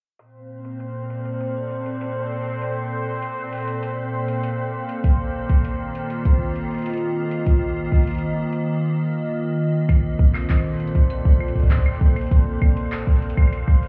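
IDM at 99 BPM in Bb major, this intricate, glitchy excerpt sets an icy, crystalline glass pad of detuned sine voices with a moving notch beside a bubbling sawtooth texture whose resonant filter steps at random, both chorused and bathed in built-in reverb over Bbmaj7 and Ebsus2 chords. A booming analog drum machine with metallic, tape-warm hats, claves and handclaps runs through low-pass filters and digital delay, with a filter sweep on it until 9.9 s, and a deep, up-front electronic kick drum enters at 5.0 s. The whole mix sounds muffled as if heard through a wall, wrapped in club reverb and digital ambience.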